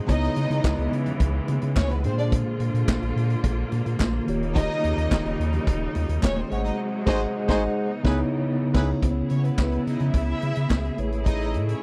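Disco at 107 BPM in 4/4, driving and danceable, built on a vintage drum kit with dark cymbals, a tight kick and handclaps sitting up front, a round sine sub bass, and a mellow tine electric piano comping through chords that move from C#m7 through A#7, D#7 and G#7. Lush bowed strings fill the texture, with a clear studio string section holding sustained chords while a symphonic violin section carries a second line, and very quiet high-tuned congas and a crisp group handclap add percussion. A tight horn section punches in with stabs from 7.1 to 8.9 seconds during a band accent, landing on C#m9 before the passage moves toward Amaj7 in this dry, cut-off excerpt.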